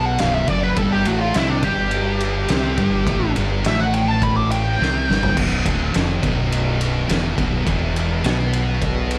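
A compressed, wah-soaked fuzz lead guitar with slapback echo solos up front through the first 5.3 seconds of this sludgy, ominous stoner and doom metal excerpt, over a round, overdriven fingered bass, a pair of dark thick fuzz guitars (one very quiet and dropping out at 5.4 seconds), a bright, scooped, double-tracked high-gain rhythm guitar in the background, and an oversized, muffled, low-tuned drum kit with a boomy kick and fat snare whose fill at 4.8 seconds ushers in the closing section, all in a small, lightly reverberant room.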